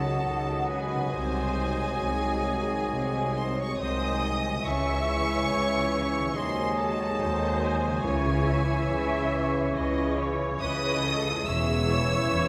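Elegiac and solemn, this rubato romantic orchestral passage sets a clear violin section's vibrato melody above a second line shared by a mellow, hollow flute section, a very quiet violin section and an oboe, while a focused viola section and a bassoon accompany, dark French horns and distant trombones hold sustained chords, a bright concert harp rings out arpeggios, lush cellos and double basses carry the bass, and hard-mallet timpani sound at 0.0 s and again at 8.0 s, within a wet concert-hall reverb.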